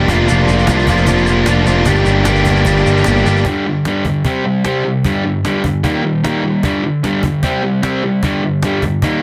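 Restless and moody, this indie rock excerpt drives at 151 BPM in G minor: a bright, up-front fuzz guitar riff runs throughout, while a chorused, delayed overdriven guitar, a fuzzy, overdriven bass, and a grainy tube shaker in the background drop away at 3.4 seconds, leaving the fuzz guitar and a snappy, close, dry cajon to carry the riff over mostly power chords through to about 9.2 seconds, all in a dense, heavily limited mix with light reverb.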